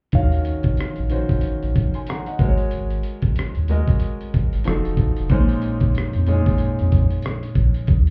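A 93 BPM groove in 4/4 with a 60% swing on the sixteenths sets this smooth, late-night R&B and neo-soul excerpt in Eb dorian, as a dusty sampler-style kit of gritty, compressed hi-hat, thumpy kick and rim click sits up front alongside a round, dark analog bass with a filter sweep. A clear, vintage-toned concert grand piano comps through Ebm9, Ab9sus4, F7b9 and Bbm11 from 0.1 s to 7.9 s. The whole mix sounds muffled as if heard through a wall, with a touch of club reverb.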